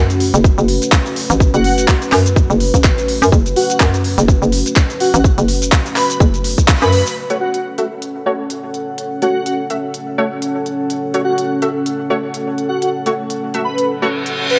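A light reverb gives this bouncy, swaggering bass house cut a roomy sheen, its tape-warm drums re-recorded in a large room and set at 125 BPM in F# minor with a 57% swing on the sixteenths. From the start, a deep, moody ambient pad holds sustained F# minor chords under chorus and its own reverb, pumping against the sidechain, while a hollow, knocking FM bass punches up front until 7.0 seconds. A garage kit of crisp hi-hats, handclaps and shaker runs throughout, joined by a tight, up-front electronic kick that drops out at 6.8 seconds after a band accent. An airy, dreamy lead with a detuned sine tone and a moving notch floats in at 1.5 seconds, trailing dub echo. The second half brings a breathy, full-bodied pad and a bold, bright orchestra-hit-like stab whose filter sweeps as it rings with ring-modulated edge and dub echo, before a reverse cymbal rises at 14.1 seconds.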